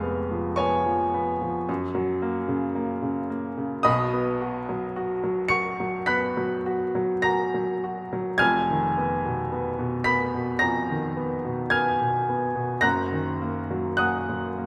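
Classical romantic nocturne for solo piano, cut from a longer piece, with a wistful, mournful mood and a free, rubato pulse in 4/4. A clear baby grand piano carries the whole passage alone from 0.0 to 14.7 seconds, sitting up front with an intimate, natural character and audible action noise. Its range stretches from the deep bass at F1 up to the high treble at Db7. The harmony moves from Db7 over F through Gb, B and Fm7b5 before settling on Ebm over Gb at 12.8 seconds. A moderate scoring stage reverb with a 1.7-second decay gives the piano a gentle sense of space.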